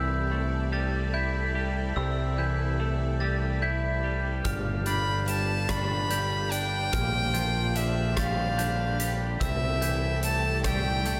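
Cinematic and euphoric, this post-rock excerpt in a straight 6/8 opens with a bright studio string section holding sustained chords in the background, while a twangy, compressed twelve-string electric guitar and a ringing glockenspiel struck with hard plastic mallets spin arpeggios, both trailed by analog delay. Underneath, a growling fingered electric bass sits up front, its overdrive giving the low end a gritty edge as the harmony moves from C6 through G7 and Bb6 and back to C6. At 4.5 s a huge arena drum kit arrives with hi-hat, rim click and a punchy kick in a pumping room sound. Moments later, at 4.9 s, a solo violin takes the melody, its clear, airy bowing and light vibrato carrying a slightly nasal, earthy tone. A lush hall reverb and big arena sound bind the parts into a grand, soaring whole.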